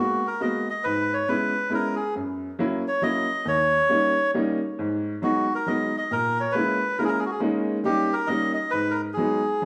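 A moderate plate reverb lends studio ambience to this brief, nostalgic and bittersweet musette waltz in G# minor at 137 BPM in 3/4, where a reedy, breathy melodica carries the melody up front over a clear, woody upright piano accompaniment, both playing throughout the 9.7-second cut from a longer piece.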